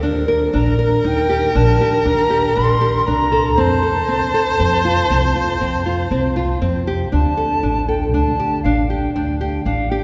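Hypnotic and urgent, this chamber-music passage from a longer contemporary instrumental piece moves in an uneven 7/4 with a straight feel, passing from Ebmaj7 to F and then to Dsus4 at 7.1 seconds. A small, fingerpicked nylon-string guitar plays up-front arpeggios with audible finger squeak, while a woody pizzicato upright bass on steel strings holds the low end. A rich, focused bowed viola with vibrato carries a second line until 6.8 seconds, and a distant, pure silver concert flute with a crisp attack and expressive vibrato sings the melody from 0.5 seconds, all within a wet cathedral reverb of a church or concert hall.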